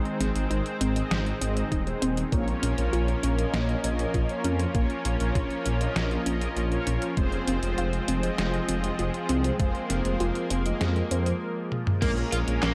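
Lightly reverberant and nocturnal, this nostalgic synthwave excerpt in Bb minor moves at 99 BPM in a straight 4/4, with a lush, thick chorused pad holding sustained chords while a warbly, lo-fi pluck with tape echo spins arpeggios in the background and round, brassy synth brass with phaser adds stabs over chords moving from Ab to Bbm to Fm. A dark, rumbling detuned saw bass sits up front alongside an overdriven, sampler-style detuned 8-bit drum machine with crash, handclaps, hi-hat, snare and toms, and a thumpy overdriven electronic kick enters at 1.7 seconds. After a brief break and drum fill, an overdriven semi-hollow guitar with lush chorus and tape echo enters at 12.0 seconds with a picked riff over a Bbm7 chord.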